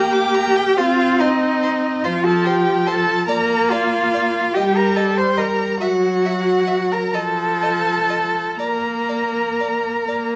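A string quartet opens together in a slow, lyrical and tender romantic movement in 6/8, moving freely in rubato at 40-49 dotted-quarter beats per minute and tuned to A4 = 437 Hz. A clear, focused violin sings the melody over a rich, more distant second violin line, while the smooth, even viola accompaniment and the up-front cello bass sit closest to the ear, each player bowing with vibrato. Harmonies pass from Gm/Bb through Cm, F, Bb5, a rootless Eb/G and Gb back to F before the chords fall away at 8.6 seconds, all within a moderate recital-hall reverb in a passage cut from a longer piece.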